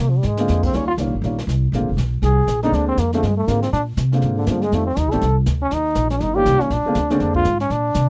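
Small-group swing and bop jazz at a brisk 241 BPM in Bb mixolydian, this playful, relaxed fragment features a clear, vintage trombone soloing up front over woody, thumpy pizzicato upright bass, a brushed drum kit with dark cymbals and a boomy kick that opens with a fill at 0.2 seconds, and an intimate baby grand piano with audible action noise comping through dominant ninth chords, all captured in a dry, close 1970s-style studio sound.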